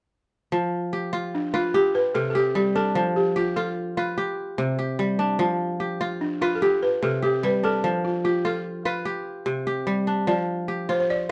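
West African traditional music with a warm, flowing mood, moving at 98 BPM in a straight 12/8 and set in F lydian, cut from a longer piece. A ringing, crisp, fingerpicked kora spins arpeggios up front from 0.5 s, and at 1.3 s a woody, buzzing balafon played with soft rubber mallets joins with a dark, smooth melody. The two musicians play live in one room, with a moderate studio reverb giving the sound a sense of space as the harmony rocks between F and C.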